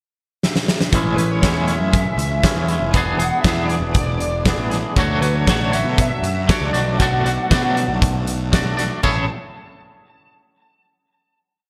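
Bright 1980s-style digital production and lush hall reverb frame this jangly, carefree indie rock piece, where a big rock drum kit with a fat snare, a punchy kick and gated reverb plays a fill at 0.4 seconds before a clean, twangy strummed electric guitar with tremolo, a round, fuzzy picked bass riff and a raw, lo-fi garage guitar playing song-like motifs through overdrive, chorus and delay carry a verse over Amaj7, E7, Dmaj7 and Bm7 and settle on a final chord at 9.0 seconds.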